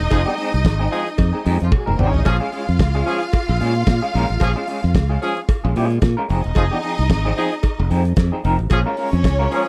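A damped 1970s drum kit with a fat snare and tight kick opens this glamorous, danceable disco excerpt together with a growly, up-front fingered electric bass, a twangy clean electric guitar with tremolo, and a rich bowed string section, with a clear horn section and a metallic cowbell joining almost at once. The groove sits at 112 BPM in 4/4 with a light 16th-note swing, in B-flat minor, moving between Fm7 and Bbm7. The drums and bass lead the mix, while the horns punch out vintage, pop-style stabs with light vibrato. The strings carry a smooth, focused second line with vibrato, the bright guitar fills in the accompaniment, and the cowbell sits in the background. A drum fill at 1.7 seconds leads into the Bbm7 change, and the whole cut has the dry, close sound of a small 1970s studio room.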